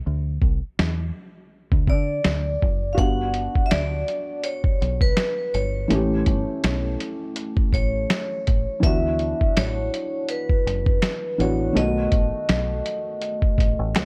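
A lo-fi hip hop snippet sits in a light studio reverb, reflective and nostalgic at 82 BPM with a gentle swing. A round, dark dub bass and a compressed, muffled sampler-style drum kit with a thumpy kick, hi-hat, snare and snaps open the track. A bright, ringing vibraphone played with hard mallets, slow motor vibrato and tape echo carries the melody from 1.9 seconds. A soft, felt-muted upright piano with audible action noise joins at 2.9 seconds, and a very quiet finger snap arrives at 3.7 seconds. Together they move through Gmaj7, A7, D69 and B7.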